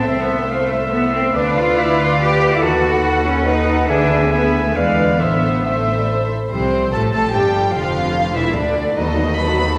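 Dramatic and urgent, this fast romantic orchestral passage in 3/4, cut from a longer piece, sets an intimate chamber violin section with soft, sul tasto tone on the melody over smooth symphonic violins, a lush viola section in the background, an intense, bright cello section and a rich double bass section, while a present oboe and a distant, very quiet clarinet add second lines until about 6.5 seconds and a mellow, ringing harp plays arpeggios, all heard from further back in a reverberant concert hall.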